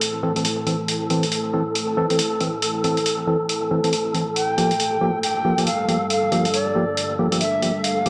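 An airy, bamboo-toned shakuhachi enters at 4.4 seconds with a vibrato-laced melody trailing dub echo over a meditative, cavernous deep dubstep groove built from hollow, chorused organ stabs, a gritty, pitched-down hi-hat placed up front, a breathy wind-like noise texture, and a deep, detuned ambient pad under a filter sweep, all set in a saturated, gritty mix within a moderate room reverb.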